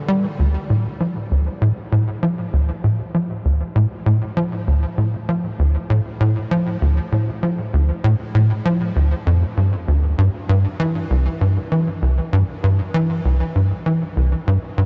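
A tight, punchy sequencer bass plays alone from 0.1 s, its sawtooth and square-wave filter plucks ranging from C2 to G3 and dressed in lush chorus and tape echo, driving this mysterious, expansive ambient fragment in D minor at 98 BPM inside a dreamy, reverb-soaked mix whose huge space trails on for 7.1 seconds.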